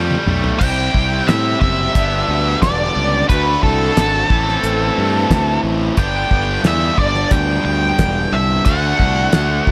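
Driving and swaggering, this short classic rock excerpt in G major moves at 89 BPM, opening with a drum fill from a damped 70s kit that is dry and dark, with a fat snare and tight kick. A sludgy, double-tracked distorted guitar plays a bright overdriven riff alongside a round, fuzzy fingered bass, both pushed up front. From 0.6 seconds, an octave-fuzz lead guitar with wah carries the melody over chords moving from C through G, D and A minor, all set in light reverb and small-room ambience.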